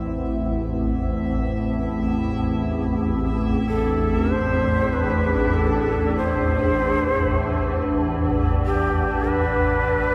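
Desolate and unsettling, this dark ambient drone in A minor moves at a slow 48 BPM, an excerpt cut from a longer piece that holds on a single A minor chord in a dreamy hall soaked with reverb. A swarming, detuned low drone with a moving notch and granular grain sits up front beside a warbling, vintage sawtooth pad whose resonant filter swells as it fades in over the whole clip, while a bright, bubbling texture of random filter steps fades out high above. At 3.7 s a breathy, mellow shakuhachi enters with chiff and vibrato, its bamboo tone trailed by shimmer reverb and analog delay.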